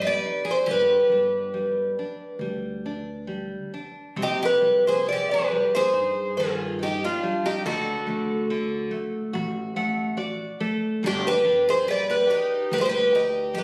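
A passionate, mournful fado-style ballad in C harmonic minor, this excerpt moves at a rubato 70 BPM in 4/4, tuned slightly low with A4 at 437 Hz. A fingerpicked twelve-string acoustic guitar carries the melody up front, its archtop tone boxy and octave-doubled with a shimmering edge. Beneath it, a picked twelve-string dreadnought adds a bright second line, while a full-bodied nylon-string guitar with fresh strings provides fingerpicked accompaniment, finger squeaks audible, and steps forward with a fill from 9.3 to 11.0 seconds. A pizzicato upright bass with steel strings anchors the low end with a woody, growly tone. The harmony moves from Cm to G, back to Cm, then to D and G, and the whole is heard through a moderate recital hall reverb, captured on a phone in the room.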